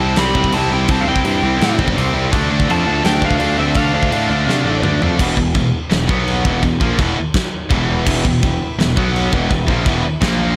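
Aggressive, dark heavy metal in E phrygian at 167 BPM, where a dark overdriven lead guitar and a high-gain second lead guitar with tape echo carry the opening until 4.8 s over two bright rhythm guitars churning a riff, a growly fuzz-drenched bass up front, a big-room drum kit with a fat snare that fills from 4.5 s, and a very quiet, reedy period-style chamber string section holding sustained chords that returns at 8.1 s.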